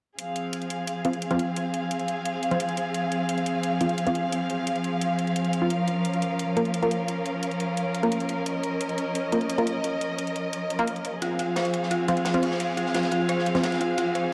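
A bowed chamber string section, rich and vibrato-laden with vintage 12-bit sampler grit, holds sustained chords over bright, overdriven electronic hi-hats from 0.2 s, opening this dark, aggressive slice of technical drum and bass as the harmony moves from Fm to Bbm and back. Muted, detuned sawtooth dub chord stabs with chorus and delay enter at 1.0 s under a filter sweep. At 11.2 s an eerie, inharmonic FM synth bell joins with tremolo-laced arpeggios alongside a crunchy, saturated breakbeat kit of snare, hats and ride, mid-forward with a rolled-off top, and the mix is soaked in plate reverb and small-room ambience for a dreamy cast.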